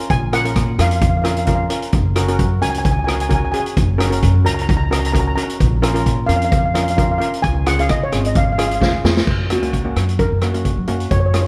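A mellow lead steel pan, played with soft rubber sticks, carries the melody of this carefree, bouncy calypso excerpt in F# major, its metallic shimmer smooth and soft. Beneath it a second pan, struck with hard rubber sticks, plays a bright double-seconds accompaniment in a lower register. A pizzicato upright bass with steel strings enters at 0.1 seconds, woody and dark. An up-front street-band drum kit with a boomy kick, medium-tuned snare, rim clicks, hi-hat and dark crash cymbals keeps a lightly swung 131 BPM groove in 4/4, while the harmony moves among A#m, F# and C#. A drum fill at 8.8 seconds leads into a new section at 9.3 seconds, where a steel pan solo begins over an F# chord. Light reverb and the small-room sound of the drums give the piece a close, intimate feel.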